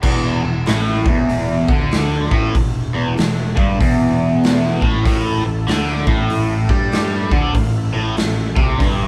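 A cranked, double-tracked stack guitar leads this gritty, swaggering blues rock and southern rock excerpt, its bright overdriven riff colored by a phaser and sitting up front over a swung 4/4 groove. Underneath, a round, punchy fuzz bass and a raw garage drum kit with a punchy kick, medium-tuned snare, hi-hat and crash play together in a bright stone room that pumps with saturated grit. At 5.0 s, as the harmony moves from Esus4 to A5, a very quiet overdriven tonewheel organ enters with thick sustained chords, key click and chorus vibrato, giving the feel of a band playing live in one room with light reverb.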